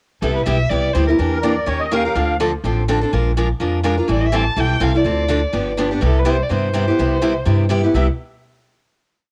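Four-to-the-bar rhythm guitar, bright and boxy with short accents on two and four, drives this lively, charming jazz manouche piece at 248 BPM in C major with a swung feel, while a thumpy, woody gut-string upright bass sits up front with a two-beat root-and-fifth line and walk-ups, a distant bowed violin carries an expressive, motif-based melody with vibrato and portamento that returns at 4.1 seconds, and a reedy, shimmering musette accordion slips answering phrases into the melody's rests from 1.3 seconds, all in a small-room home recording on cassette that closes on a final chord at 8.0 seconds.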